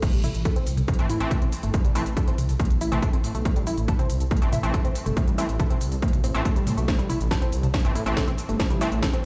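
A tight, nasal sequenced synth riff leads this dark, relentless slice of driving peak-time techno, pumping and echoing over an overdriven, up-front kick and a layered electronic kit of cracking snare, smooth hats, shaker, toms and crash. A deep, rumbling detuned saw bass pulses underneath from 0.1 seconds, and at 1.0 seconds an edgy sync-sweep polysynth adds bright, full-bodied stabs with chorus and delay. The whole thing sounds like it is played on a big sound system in a bare room.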